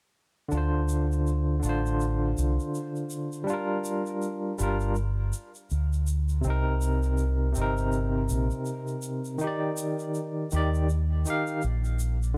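At 0.5 seconds a barky tine electric piano, a deep dub fingered electric bass and a tube shaker all enter together, setting up a brooding, cinematic trip hop groove at 81 BPM in 4/4 with a swung sixteenth-note feel. The electric piano carries the accompaniment between C3 and F5, its bright, clean tone pushed up front through a combo amp and colored by tremolo, vintage 12-bit sampler grit and tape echo. Beneath it, the round, dark bass sits equally forward, played direct and amped in a low register from G1 to Eb2. The shaker stays far back in the mix, an acoustic small-room sound with a group-handclap character. The harmony moves from Dm7 to Gm7 at 3.5 seconds, then through Cm7 to Ebmaj7 at 9.4 seconds, all within a dusky, intimate room ambience. This fragment, cut from a longer piece, ends as the parts stop around 12.4 seconds.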